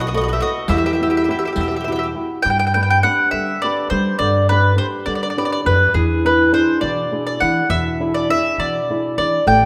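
A wet recital-hall reverb surrounds this short cut from a longer Italian folk serenade, romantic and sunny, moving in a straight 6/8 at 68 BPM in G major. An up-front, woody, double-strung mandolin carries the melody while a brighter second mandolin adds a supporting line only until 2.1 seconds, and a dark, boxy flamenco guitar accompanies with thumb-plucked playing over a pizzicato upright bass on steel strings. A vintage, band-limited riq sits in the background between 0.7 and 1.8 seconds, as the harmony moves from B7 and Emadd9 onto G and later E7.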